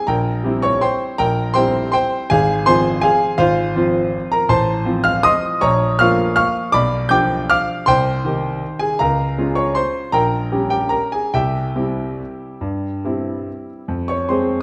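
Nostalgic and elegant, this brief cut from a longer classical waltz in 3/4 sets a solo grand piano, clear and smooth with a vintage, short-sustained tone placed up front, spanning Ab1 to G6 in a flexible rubato feel through a moderate recital-hall reverb, its harmony moving from C7/Bb through Bbm, Cm and Db6 before coming to rest on Fm at 13.9 seconds.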